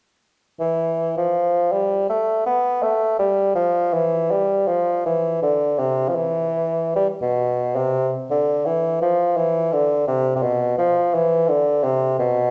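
A warm solo bassoon, set up front with a light vibrato and soft attack, sings a flowing, serene line between B2 and B3 from 0.6 to 12.5 seconds in this fragment of a longer baroque-style fantasia. The phrasing unfolds in 3/4 with rubato and uneven beats, giving the classical playing a free, unhurried feel. A wet recital hall reverb surrounds the instrument, as if heard from further back in the room.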